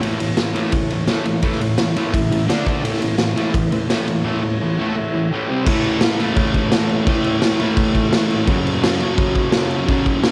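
Garage rock with a swaggering, rowdy edge, this short excerpt from a longer piece charges along at 170 BPM in a straight 4/4 feel, centred on A major. A bright, picked fuzz guitar riff, double-tracked and compressed, sits up front and runs the full 10.3 seconds, joined throughout by a raw garage drum kit whose punchy kick, medium-tuned snare, crash and ride ring in a pumping stone room with a gritty, saturated edge and a rolled-off top. Beneath them, an overdriven combo organ holds reedy, vintage chords bathed in spring reverb, and a transistor combo organ fill bursts in from 4.6 to 5.7 seconds to push the music into its second section. The harmony moves from A through D5, back to A, and touches C5 before returning to A and settling on F#m near the close. Captured on cassette at home with light reverb, the whole performance has a rough-hewn immediacy.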